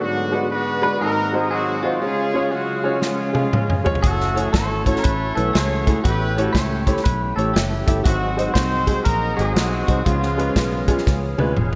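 Uptempo gospel at 119 BPM with a soulful, fervent swing, where a loose, octave-doubled horn section with light vibrato and tape echo carries the melody over clear, deep-bassed grand piano, a reedy, very quiet pedal harmonium and a background tonewheel organ with key click, slow rotary speaker, light overdrive and chorus vibrato, joined at 0.8 s by a twangy, picked clean electric guitar also carrying the melody through tape echo, then by an up-front country drum kit with a punchy kick entering on a fill at 3.0 s and a round, dark fingered bass at 4.0 s, all bathed in a dreamy, lush hall reverb before drum and organ fills close this fragment cut from a longer piece.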